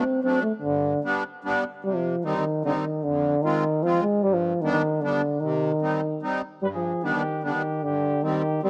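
A mellow euphonium carries the melody from the very start, its soft-attacked, roomy tone sitting up front over a reedy, sweet accordion that is close-miked and dry with a light tremolo tuning. This is a short, jolly and bouncy cut from a longer alpine folk dance band piece in 3/4 at 150 BPM, with a slight swing on the eighths and a rubato feel, set in C harmonic minor and tuned to A4 = 436 Hz. The accordion fills out the accompaniment across a full range beneath the euphonium's classical-style line, moving through chords from D and G to C minor and F minor before returning to G and C minor. At 6.6 seconds a mellow trumpet joins with a second line, its light vibrato and distant, classical-style sound adding a gentle lift in the closing moments. The whole passage has the light reverb and intimate character of a close 1970s-style studio recording.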